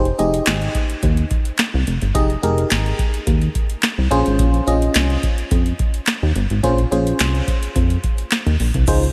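Slick and late-night, this short cut of early-eighties boogie funk moves at 107 BPM in a straight 4/4, shifting from Fm9 to Bbm9 at 4.1 seconds. A glassy, bell-like FM electric piano with chorus plays the accompaniment over a dark, glossy chorused synth bass with a plucky filter, while a booming analog drum machine supplies a deep kick, crisp snare, metallic hats, handclaps and crash. A grainy tube shaker slips in at 8.9 seconds, and a huge ambient reverb soaks the dreamy mix, which carries lossy compression artefacts.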